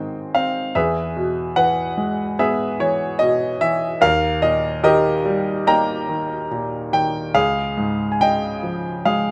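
A concert grand piano sits up front in light reverb, its tone clear and intimate, with deep bass and the mechanical noise of its action audible beneath the notes. This brief excerpt of classical solo piano is lyrical, tender and peaceful, moving in four with a gently flexible rubato that lets the phrases breathe. The player ranges from Db2 up to Bb5. The harmony drifts from Ab into an open-sounding Eadd9 at 0.8 seconds, settles on Eb at 4.0 seconds, and reaches Dbadd9 at 7.4 seconds. The natural, unadorned recording keeps the listener close to the instrument for the full 9.3 seconds.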